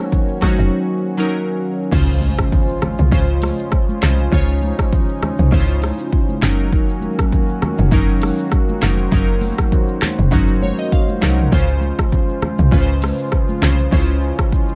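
A dry, close mix carries this romantic, breezy afrobeats piece at 100 BPM in Db major, with a lightly swung 16th feel and chords moving between Gb6 and Dbmaj7. Glassy, detuned digital keys with chorus and plate reverb play the accompaniment over a smooth, warbling vintage analog pad that pumps from sidechain, while a deep house kit with a deep kick, dark hats, crash, handclaps, rim clicks, shaker and toms sits up front beside a woody, punchy log drum bass entering at 0.6 seconds. Ringing, high-tuned congas played with soft hands stay in the background, a very quiet electronic impact arrives at 1.9 seconds after a short break, and the keys add a fill at 10.3 seconds.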